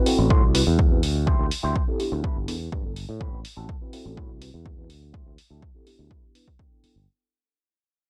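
Filtered disco house at 124 BPM in A dorian, this short excerpt has a groovy, nostalgic mood and a dry, gritty feel, like a hardware recording run through cassette tape. A punchy, tape-warm electronic kick sits up front, joined by a layered electronic hi-hat re-recorded in a large room, with sidechain pumping on the hats and percussion. A bright, growly fingered electric bass, thickened by tube saturation, carries the low end, while a mellow tine electric piano comps through Am69, D9sus4 and G69 chords with phaser, vintage 12-bit sampler grit and sidechain pumping. A twangy, picked electric guitar with an envelope filter plays the riff higher up, pumping with the beat under a low-pass filter. A filter sweep and a fade-out run across the whole passage, and a clean electric guitar fill arrives at 6.3 seconds.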